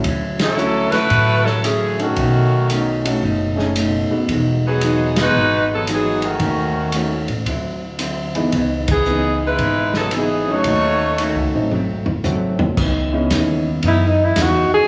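A spacious recital-hall reverb gives this wet, dramatic big band swing excerpt a concert-hall glow, moving at 113 BPM in C# minor with a swung feel. The rhythm section comprises a dark, clean hollow-body electric guitar, a present grand piano, a woody pizzicato upright bass, and a lo-fi, muffled drum kit with a punchy kick, gritty saturation and a rolled-off top. Up front, a clear saxophone section carries the melody from 0.4 s to 11.6 s with light vibrato and a smooth top, while full-band accents punctuate the line over rich chords such as Dmaj9, Emaj9 and C#m9. A drum fill leads into a closing passage, where the harmony settles from G#7b9 onto C#m9. There, a breathy alto saxophone with subtone and scooped notes steps forward as soloist, backed by a very quiet, bright saxophone section holding sustained chords, before the recording cuts off at 14.9 s.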